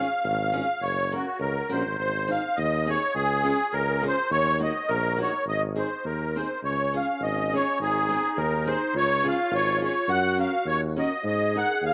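A reedy musette accordion with a shimmering, vintage edge carries the melody up front in this jolly, bouncy alpine dance band clip. It moves at 104 BPM in 2/4 with a light swing and some rubato in D-flat major, over a punchy tuba bass with vibrato and a fingerpicked steel-string guitar sitting in the background. A mellow, distant clarinet adds a second line from 6.6 seconds, and a moderate plate reverb lends the short fragment a roomy sheen.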